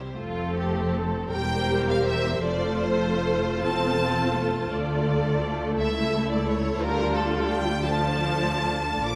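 In a rubato 6/8 lilt of 48-58 BPM counted in dotted quarters, this tender, serene slow movement for string orchestra in F major, cut from a longer piece, drifts from F through C/E toward D minor and A/C#. A lush violin section carries the melody up front with smooth, even vibrato, while a second violin line with soft attacks and a smooth top and a warm viola section, gliding with portamento, fill the inner voices. A distant, rich cello section in the background and an expressive double bass section anchor the bass, all inside a moderate concert hall reverb.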